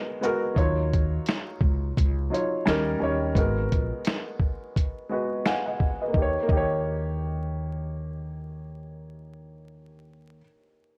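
Lo-fi hip hop at 86 BPM with a 60% swing on the sixteenths, this hazy, melancholic excerpt cut from a longer piece moves through minor ninth chords, with a dark upright piano carrying the accompaniment in an intimate, mellow tone, its action noise audible and its sustain short under a cassette tape effect. A muffled, compressed sampler-style kit of thumpy kick, medium-tuned snare, hi-hat, shaker and finger snaps plays up front from 0.2 until 6.7 seconds, while a growly pizzicato upright bass on steel strings holds the low end until 10.4 seconds. Light reverb, vinyl crackle and the warbly pitch drift of worn old tape give the mix its faded, dusty character.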